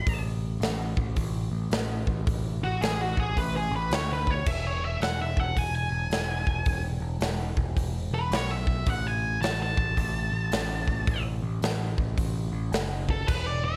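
An octave-fuzz lead guitar opens this gritty, raunchy blues rock and southern rock fragment, its dark, distorted tone carrying a solo through the whole 13.8 seconds with plate reverb around it. Almost at once a growling picked electric bass joins, bright and overdriven, alongside a big acoustic rock kit with a punchy kick, medium-tuned snare, hi-hat and crash cymbals, all in a swung power-trio groove. The three parts sit up front in a lightly reverberant mix, with the harmony moving from a chordless opening to an E chord at 4.5 seconds and back to chordless playing at 8.9 seconds.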